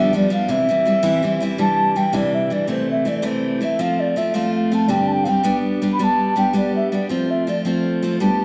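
A hollow wooden flute and a bright, boxy picked steel-string acoustic guitar open this lively, rollicking Celtic folk excerpt together in a straight 6/8. The flute carries the tongued melody with vibrato, sitting distant in the hall, while the guitar plays the accompaniment up front through a progression that moves from C and Cadd9 through Am/C and F to a Gsus4 resolving to G. A recital hall reverb and a dark overall production surround the pair.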